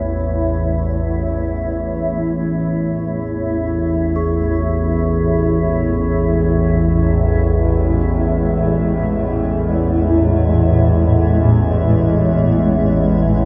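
Drenched in cathedral reverb that sets it in a vast, echoing space, this unsettling, dark ambient drone in free time fades in over 13.5 seconds. An up-front analog drone of detuned sawtooth and pulse waves, thick with chorus and phaser, sits low beneath a cloudy, wave-folded granular pad whose sustained chords move from A to C#m/A at 4.2 seconds, while a metallic bronze singing bowl, sounded with a wooden striker, rings with slow beating in the background.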